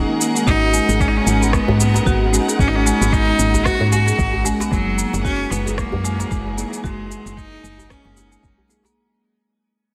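Meditative and hypnotic, this organic downtempo piece, cut from a longer work, moves in a swung 4/4 as a bright, biting solo cello carries the melody up front with light vibrato, digital delay and shimmer reverb, over rosewood marimba arpeggios touched by tape echo and a round, woody FM bass. Veiled, con sordino strings hold sustained chords with sidechain pumping and shimmer, while very quiet, felt-like synth keys add dark, chorused accompaniment. A soft electronic kick, electronic shaker and rim click with a clipped snare, and a tight, dry djembe in the background drive the groove through a lush hall and a dense, heavily limited master, with a fade-out starting at 3.3 seconds.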